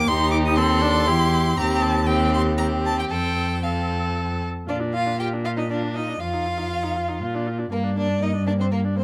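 From the first beat, a string quartet plays together in a quick, cheerful classical-period movement in Bb major, set at 119 BPM in a straight 3/4. The first violin carries the melody between Bb4 and Eb6 with a focused, vibrato-laden tone, while the second violin holds a smooth, even second line beneath it. The viola fills in the accompaniment with a rich bowed sound, and the cello, placed up front and louder than the others, anchors the bass with light vibrato. The harmony opens on Cm/Eb and moves to F before a new section begins on Bb at 4.7 seconds, passing through Ebsus2/F and back to Bb before arriving on Gm. Light reverb gives the four solo players a gentle sense of space in this short passage cut from a longer piece.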